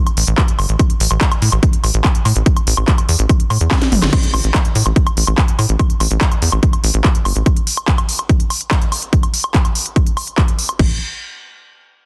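This intense, driving psychedelic trance excerpt opens on a drop, with an overdriven techno drum kit entering at 0.1 s: a cracking snare, smooth hi-hats, handclaps, crash cymbal, toms and woodblock sit up front in the mix. A tight sequencer bass follows almost at once, its sawtooth and square-wave tones shaped by a filter pluck, a moving notch, a fast attack and a decaying tail, all pushed through tube saturation in the low register between G1 and A2. A heavy, layered electronic kick, overdriven and forward, anchors the straight 4/4 pulse at 144 BPM and stands as the loudest part. A drum fill starting at 3.7 s leads into a band accent and a new section, and the punchy bass drops out at 7.4 s before returning briefly near the end. The sound is dry, with a dense, heavily limited modern master.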